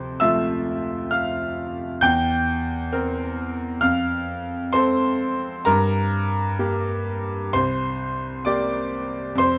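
Classical romantic nocturne for solo piano, wistful and mournful, moving at 66 BPM in 4/4 with a free rubato feel. A bright grand piano with a brilliant, vintage tone and long sustain sits up front, spanning C2 to G6 as the harmony passes from F through C7/E and Gm before settling on C5 at 7.6 seconds. Close, detailed microphones and light reverb capture this short passage cut from a longer piece.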